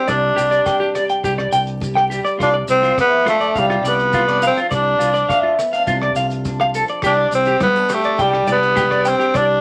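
A raspy, gritty tenor saxophone leads up front with light vibrato and scooped notes, while a slightly broken-up electric guitar plays tremolo-washed arpeggios over a boxy picked archtop guitar with audible finger squeak, in this joyful, danceable highlife excerpt at 103 BPM in straight 4/4. A fingered electric bass holds a low C, and a cloth-damped, thuddy drum kit with a tight kick, hi-hat and rim click sits in the background beside grainy maracas, as the harmony moves from Csus2 to Dm7/C and back. Bright, thin-skinned congas join at 7.0 seconds, all set in moderate studio reverb with a layer of vinyl crackle.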